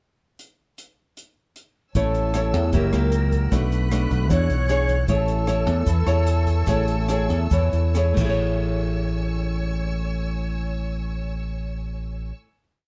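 The sound is close, detailed and dry, with little reverb. This is a complete, relaxed and sophisticated bossa nova piece in A major at 130-154 BPM in a straight 4/4. An open jazz drum kit opens the pickup bar at 0.4 seconds, with dark cymbals, a boomy kick, hi-hat and rim clicks that settle into a soft bossa groove. The strings and bass enter at 1.9 seconds, and the rest join at 2.0 seconds. An up-front, punchy electric bass plays dotted root-and-fifth lines. A fingerpicked nylon-string guitar, finger squeak and all, adds thumb bass and syncopated plucked chords. A grainy egg shaker sits in the background. Above them, a distant small flute group plays a mellow, tongued, slightly unsteady guide-tone line with vibrato, over a lush, bowed string pad with soft attacks. The chords move through Amaj7, F#7b9, Bm7 and E13 and return to Amaj7 at 5.1 seconds, where the tempo begins to slow. At 8.4 seconds the ensemble lands on a final hit that rings out with the warm strings, guitar, bass and flutes.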